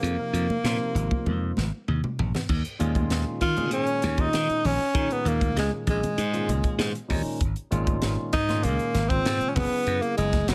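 A straight 4/4 groove at 98 BPM drives this nocturnal electric jazz fusion excerpt in Eb minor, anchored by a crisp, airy drum kit with dark cymbals, a high-tuned snare and tight kick, a drum fill from 1.3 to 2.5 seconds, and damped, hard-handed congas joining in the background at 0.5 seconds. Up front, a growly, punchy slap bass holds down the low end while a clear tenor saxophone soloing with vibrato and a soft attack carries the melody, and a barky tine electric piano, lightly overdriven through a combo amp with phaser, supplies accompaniment. Suspended chords from Bbsus2 to Eb9sus4, Absus24 and Gb9sus4 sit in light reverb and studio ambience.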